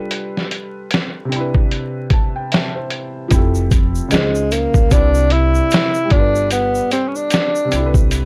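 This lo-fi hip hop excerpt has a cosy, dreamy mood, moving at an unhurried 75 BPM in C major with a lazy swing on the sixteenths. A soft, felt-muted upright piano opens the clip with mellow, intimate chords under a filter sweep and cassette-tape colouring, adding a gentle fill at 1.7 s, while a compressed, pitched-down sampler drum kit sits up front with a thumpy kick, a medium-tuned snare and hi-hat carrying 12-bit grit. At 3.3 s a pizzicato upright bass enters, its woody, steel-strung tone thickened by transformer saturation, alongside a grainy, bright tube shaker sitting quietly in the mix. A breathy tenor saxophone takes the melody at 4.1 s, playing up front in a jazz style with subtone, vibrato and scooped notes, its smooth top softened by a low-pass filter. The harmony drifts through lush major-ninth chords, with a Dbmaj9 lending a dreamy colour before resolving through G7 back to Cmaj9. 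The whole recording feels dry and gritty, with little reverb, hardware character and a bed of vinyl crackle.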